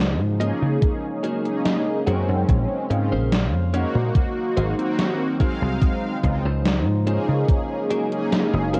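A punchy, foam-muted slap bass anchors this hazy, melancholic vaporwave excerpt. It sits alongside a thumpy, overdriven electronic kick and a gritty, gated drum-machine snare and hi-hat, round, detuned synth brass with phaser and delay, and a clean, dark electric guitar riff with a brief fill at 1.2 seconds, while a warbling, nostalgic pad hangs in the background and the recording carries worn cassette-tape pitch drift.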